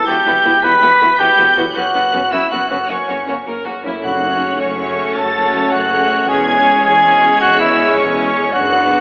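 In a steady 12/8 at 107 BPM, this adventurous, determined cinematic passage sets a lush, vibrato-laden studio violin section on the high melody over a mellow, hollow flute second line, warm trumpet stabs up front, and a dark French horn section sustaining chords from 0.5 seconds, while a background symphonic violin line with expressive portamento, a focused viola accompaniment, cello and distant double bass carrying the bass, a very quiet ringing harp in arpeggios and a brief timpani stroke at 4.0 seconds fill out the texture, everything bathed in scoring-stage reverb and a thin telephone-like filter as the harmony moves from Emadd9 through F#sus4 and F#m to C#m/E.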